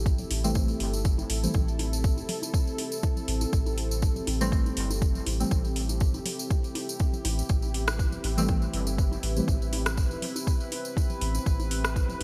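A deep, tape-warm electronic kick sits up front at 121 BPM in 4/4 with a light 16th-note swing, joined by a deep house kit of metallic hi-hats and rim clicks, a jingly, close tambourine and very quiet analog congas in this nocturnal, hazy dub techno excerpt in A minor, resting on a single Am7 chord. Beneath them a round, soft sub bass and a dark, evolving sawtooth pad with chorus both pump against the sidechain, while a mellow, detuned chord stab with filter sweep, phaser and dub echo recurs until 9.5 seconds. Light reverb and digital ambience give the mix a bright 1980s-style sheen, and the clip is cut from a longer piece.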